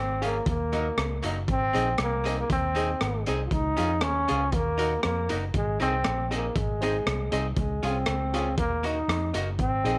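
A clear, vintage trombone carries a cheerful ska melody up front from the very start, over a round, foam-muted electric bass, in this joyful cut from a longer piece. From 0.2 s a compressed hollow-body archtop guitar adds clean picked accompaniment, a mellow upright piano with audible action noise places woody stabs in the background, and a gritty, saturated breakbeat kit with a tight kick, hi-hat and rim click drives the straight 4/4 groove. Spring reverb and a small room surround the whole as the chords move through Ebm, Ab and Db.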